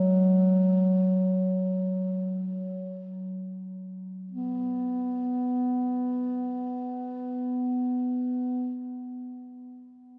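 A dark bass clarinet sits up front and plays alone, in a classical style, from 0.0 to 8.7 seconds, its line staying within the narrow span of F#3 to B3. This is a free, expressive classical piece in free time, tuned to A4 = 443 Hz, and its mood is meditative and yearning. The opening passage slows down until 4.3 seconds, where a second section begins. The instrument is bathed in a wet cathedral reverb with a long six-second decay, which places it in a vast, echoing space. The passage is cut from a longer piece.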